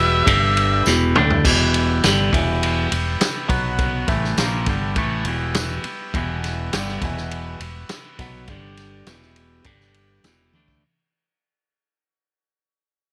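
A brief, dark burst of octave-fuzz lead guitar on a high E opens this hypnotic, trippy psychedelic rock excerpt, distorted and doubled by slapback echo, and it falls silent by 0.9 seconds. Beneath it from the start, a buzzy combo organ holds sustained chords quietly in the background. A clean, compressed twangy electric guitar sits up front, playing a picked riff through a phaser, and a warm fingered electric bass moves in the low register. A vintage drum kit joins at 0.3 seconds, with a tight kick, medium-tuned snare, ride and crash cymbals, and toms, and a drum fill at 0.9 seconds coincides with the entry of a jingly, saturated tambourine in the background. At 102 BPM in straight 4/4, the music sits in E minor, circling between E minor and G and B power chords, and a drum fill near the end closes the passage. From 1.4 seconds the whole passage fades out inside a small, natural-sounding room.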